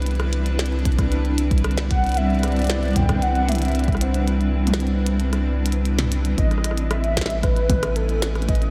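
A straight 4/4 pulse at 114 BPM carries this glitchy, playful IDM fragment, where clicky hats, rim clicks, a tiny snare and toms patter in a small room around a deep electronic kick, a rubbery, nasal square bass bounces up front beneath a cloudy, evolving granular pad on Cmaj9, and a warbling, nostalgic lead with tremolo, analog chorus and diffuse delay enters at 1.9 seconds, while the kick drops out at 4.3 seconds and returns at 6.4 seconds as the harmony shifts to Amaj9, all bathed in a dreamy cathedral reverb.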